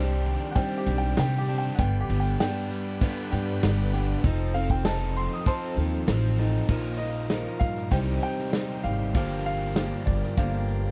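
A dry, close 1970s-style studio sound frames this wistful, dusty folk rock and heartland rock excerpt at 98 BPM in 4/4, where a clear, polished concert grand piano carries the melody as a solo through the first 6.7 seconds over picked steel-string acoustic guitar with fresh strings, a double-tracked overdriven semi-hollow guitar riff, a woody pizzicato upright bass and a natural country drum kit with a punchy kick up front, while a very quiet tonewheel organ with key click and fast rotary speaker holds sustained chords beneath a progression that moves from Cmadd9 toward Gm7.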